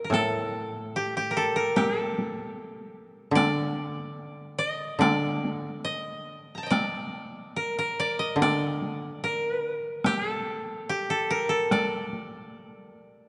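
Calm and austere, this excerpt of Japanese traditional chamber music in a free, rubato 2/4 pairs a bright, woody koto melody played with fingerpicks up front against a mellow, dry second koto accompanying in the low register until 10.8 seconds, while a compressed, saturated taiko ensemble struck with hard sticks sounds alongside them, the whole recording set in a long church reverb with the top end rolled off above 10.8 kHz.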